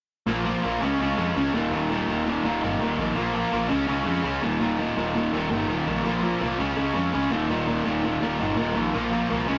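Punk at a fast 166 BPM in a straight 4/4, upbeat and rebellious, with two bright, compressed distorted electric guitars playing a riff from 0.3 to 9.6 seconds, one up front and the other set back in the background, over a growling, punchy picked electric bass with overdrive. The chords cycle through Bb5, Db and Eb5. The rough rehearsal-room sound carries tube saturation and a moderate booth ambience, in a clip cut from a longer piece.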